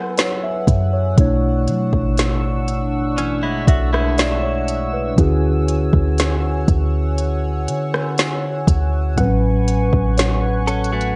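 A mellow tine electric piano and a shimmering, retro chorused pulse-width pad open this moody, longing contemporary R&B excerpt at 60 BPM in 4/4. They are joined almost at once by a smooth, up-front electronic drum kit with a soft kick, woody snare and tape-warm character, by a gentle round pluck in the background with chorus and digital delay, and by a deep, boomy 808-style sine bass. From 3.2 s a direct-recorded clean electric guitar adds picked, compressed arpeggios with subtle chorus and delay, over chords of F#m11, Bm11, Dmaj9#11 and A69 in a dry, rolled-off sound.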